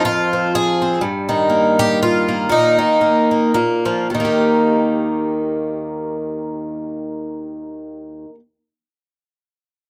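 In a lilting 3/4 with a light swing on the eighths, somewhere between 105 and 125 BPM, this brief, gentle folk fragment eases into a slowdown from 1.0 to 4.1 seconds before settling on Eb major. A solo picked twelve-string acoustic guitar carries it all, sitting up front with a bright, boxy, shimmering octave-doubled tone and an audible finger squeak as it moves from Fm through Eb/G and a Bbsus4 to a Bb5. Close, detailed miking and a touch of reverb keep the peaceful mood intimate, and the clip ends at 8.4 seconds, cut from a longer piece.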